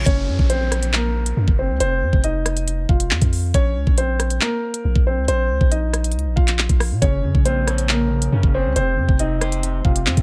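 A dry, close-sounding excerpt of ominous, dark drill hip hop with a half-time feel, built on an up-front electronic drum kit with a knocking kick, crisp hats, handclaps and rim clicks, and a deep, long 808-style bass with a sine-like, mellow tone that hits fast and decays. A dark, mellow grand piano carries the melody through a low-pass filter and delay, while a reverse cymbal and downlifter sit in the background until 3.5 seconds. A dark, slightly broken-up electric guitar, fingered and filtered, sounds briefly at the very start and returns to the accompaniment at 7.0 seconds over a brooding Gb, F5 and Bb minor progression.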